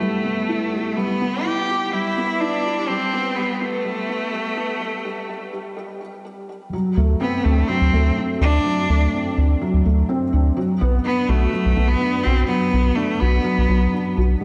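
Intimate and hypnotic piano and strings electronica at 125 BPM in 4/4, cut from a longer piece, where a felt-muted upright piano with audible action noise plays a dark riff through ensemble chorus and delay while a biting, boxy solo cello with vibrato carries the melody through a low-pass filter and delay. The two build over Em to a break at 5.8 s, before a deep, round analog bass enters at 7.0 s for the drop over D7 and Bm, the whole dreamy mix soaked in lush hall reverb.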